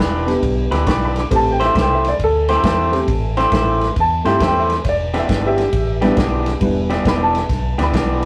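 Smoky and brooding, this short cut from an electric blues shuffle sets an up-front, slightly broken-up guitar riff over a round, foam-muted bass and a soul drum kit of punchy kick, snare and dark ride cymbal, while a worn, mellow grand piano with audible action noise joins at 0.3 seconds, all moving from Em7 to Am7 and back in a rough rehearsal-room sound with a small room's reverb.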